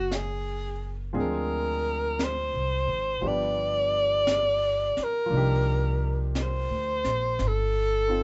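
A breathy alto saxophone carries the melody up front, its soft attack, vibrato and scooped notes giving this intimate, tender jazz ballad at 58 BPM a gently swung 4/4 lilt. Beneath it, a baby grand piano with short sustain supplies the chords, moving from Bmaj9 through Dm7b5 and G7 to Cm11, while a woody pizzicato upright bass sits close and a dark, smooth brush kit on snare and hi-hat enters at 0.1 seconds. The band plays live together in one room with light reverb and a rolled-off, mellow top end, in a short cut from a longer piece.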